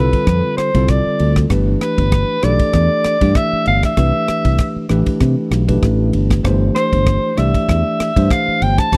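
Electric jazz fusion cut from a longer piece, bright and soaring at 97 BPM in G mixolydian with a light 16th-note swing, moving through Dm7/F, G69, C69 and Gsus4. A warm, vintage soprano saxophone leads up front with vibrato, soft attacks and scooped notes, its jazz-style solo lines carrying a slapback echo, while a bell-like, clean tine electric piano supplies the accompaniment. Underneath, a direct, amped fingered electric bass sits up front, and from 0.1 s a dry, polished funk drum kit with a tight kick, ride cymbal and rim click completes a close 1970s-style studio sound in a small room.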